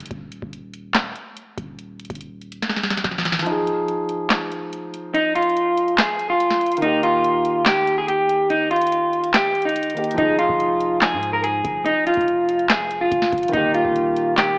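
A half-time trap beat at 143 BPM in F minor opens on a booming analog drum machine with a deep kick, crisp snare, handclaps and metallic hi-hats over a long, sine-toned 808-style bass, before a dark, low-passed baby grand piano enters at 3.4 seconds on Fm7 and Eb chords and an up-front, slightly broken-up electric guitar carries the melody from 5.1 seconds, with the kick muted from 3.5 to 10.2 seconds and the bass returning later, the whole mix colored by worn, warbling cassette tape and AM radio tone and a moderate scoring-stage reverb for a dark, menacing hip hop cut from a longer piece.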